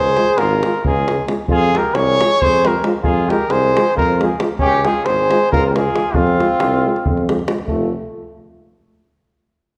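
Restless and fiery, this excerpt of Balkan brass band folk races along in 7/8 at 271 BPM counted in eighths, in F minor, with chords swinging between Db and Fm before landing on F major at 7.7 s. An up-front trumpet with light vibrato carries the melody while a punchy flugelhorn plays a second line beneath it; both sound distant and roomy and drop out at 7.3 s. A warm tuba anchors the bass and a tight davul drives the percussion, while a smooth-topped euphonium and a close-miked trombone add background accompaniment, all of it in a wet recital hall reverb.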